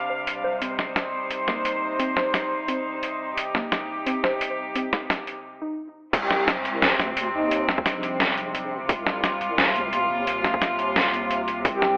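Half-time drum and bass in C minor at 174 BPM with a swung, spacious yet heavy feel, this excerpt opens with a rich, floating cello section holding sustained chords with sidechain pumping, a warbly, dusty pluck arpeggiating through chorus, tape echo and a filter sweep, and a gritty, pitched-down boom bap drum kit with overdriven snare, hi-hat and crash, then after a break at 5.4 seconds the drop at 6.1 seconds brings in a deep, wobbling bass, a hard-clipped electronic kick and brief phrases from a breathy, flute-like lead with vibrato, all heard through a telephone-filtered sound in a moderate digital room.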